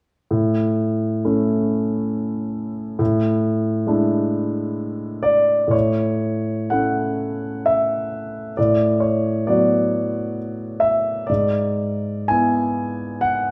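Nostalgic and serene, this romantic nocturne for solo piano moves in a three-beat metre with uneven, rubato timing, played on a warm concert grand with a deep bass and an open, up-front sound. The piano plays from 0.3 to 13.5 seconds across a range from G#2 to G#5. Its harmony settles on A and E7/A, then shifts at 5.7 seconds into a second section through Bm7/A and E7/G#, all carried by a wet recital hall reverb in this passage cut from a longer piece.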